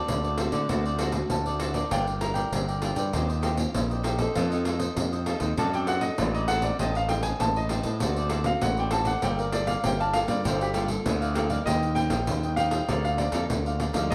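A clear concert grand piano plays a solo melody from the very start over crisp, picked cavaquinho and a full-bodied, fingerpicked nylon-string guitar set back in the mix, joined almost at once by a growling, overdriven fingered electric bass and a jingly, vintage-toned pandeiro up front, in a lively, bittersweet samba and choro fragment played live in a large studio with moderate reverb that moves into a new section at 11.7 seconds.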